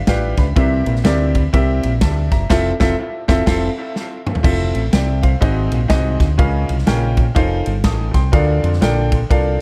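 A bright baby grand piano opens this short excerpt of uptempo gospel with a fill in its first 0.6 seconds before settling into accompaniment with a brilliant, long-sustaining tone treated with dub echo. The mood is reverent and hopeful, carried by a swung eighth-note feel and rich seventh chords. A fingered electric bass sits up front with a dark, round, punchy sound, anchoring the low end. A natural country drum kit, recorded in a studio room with a punchy kick and medium-tuned snare, drives the groove on crash, ride and toms, joining the full band in an accent from 2.5 to 4.5 seconds and closing that stretch with a drum fill. The mix is dry on reverb yet echo-heavy, keeping the instruments close and present as the phrase repeats.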